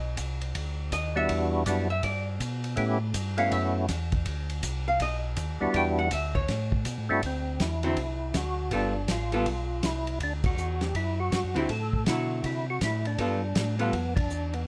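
A dark, clean hollow-body archtop guitar opens this bluesy, soulful soul jazz organ trio excerpt, taking a picked solo through the first 7.2 seconds over a brisk swung 162 BPM in D mixolydian. A fat, percussive tonewheel organ enters with the melody at 1.2 seconds, its third-harmonic percussion coloured by chorus vibrato and a slow rotary speaker. Beneath it, a second, mellow and round tonewheel organ carries the bass line with audible key click, also through a slow rotary speaker. The acoustic drum kit sounds smooth and up front, with a punchy kick, fat snare, hi-hat and dark ride cymbal heard in a small room with a rolled-off top. The harmony moves through Em7, A9 and suspended chords before settling on a D9 to G9 vamp in the second half, where the band hits an accent at 10.4 seconds. Close, detailed miking and light reverb keep the whole trio intimate and present.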